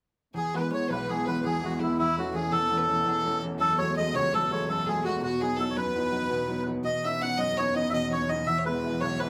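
A rollicking 9/8 Celtic folk piece, straight and lively, in this short cut from a longer piece where the fiddle, upright piano and string section begin at 0.3 seconds and the melodica joins with the melody at 0.4 seconds. The reedy, breathy melodica sits up front, with a close, earthy solo fiddle carrying a second line beneath it, while a woody, vintage upright piano plays short-sustained accompaniment over chords moving from E through A/E, F#madd9 and B before returning home. A lush bowed string section holds a low drone with vibrato and portamento, all set in a moderate studio reverb.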